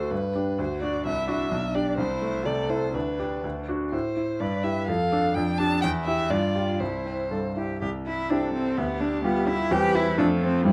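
Moving in a brisk two-beat metre with an elastic, rubato feel, this quick classical-period movement for piano trio sounds spirited and cheerful. The bright grand piano sits up front from the first moment, its brilliant, polished accompaniment ranging down into a deep bass register. A violin carries the melody with vibrato and portamento, its expressive line reaching up high while keeping a smooth top. The cello joins at 0.6 seconds with a second line that is rich and focused, sung out with its own vibrato. The harmony shifts in character around 3.9 seconds, and a new section begins at 7.8 seconds before this portion of a longer piece breaks off. Light reverb and a dark, warm production give the trio an intimate, rounded sound.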